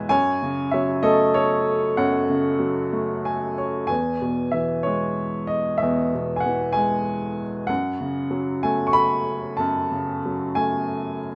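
A clear, intimate baby grand piano carries this short classical passage alone, playing lyrically in 6/8 with a free, rubato feel. The mood is melancholic and dark, with the harmony moving from F#madd9 to E and back to F#madd9, across a span that reaches from E2 up to C#6. A brief fill from 2.9 to 3.9 seconds leads into a second statement of the opening material, which carries on to 11.3 seconds. The piano sits up front with a natural tone and long sustain, and the sound of its action is audible, adding to the close, private character. Light reverb gives the instrument a little air, and the passage is cut from a longer piece.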